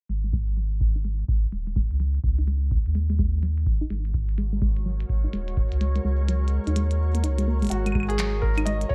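A round, softly plucked synth arpeggio runs through this melancholic, cerebral IDM fragment under chorus and tape echo at 126 BPM in 4/4 with a 62% swing on the sixteenths. Beneath it sits a deep, round sine sub bass, mellow and up front, while a dry analog kick and a glitchy, tape-tinged kit of claves, handclaps and clicky hi-hats fill out the rhythm, with low-pass filters on the hats, percussion and snare. Through the first section a filter sweep moves across the drums, sub bass and arpeggio, and the kick drops out from 5.8 to 7.7 seconds. A glassy, ethereal FM pad enters at 4.8 seconds with slow-blooming sustained chords, carrying ensemble chorus and its own reverb. At 7.7 seconds a felt-muted upright piano takes up an intimate melody through a digital delay, as the dark, close production, cut from a longer piece, rests on a G#9sus4 colour.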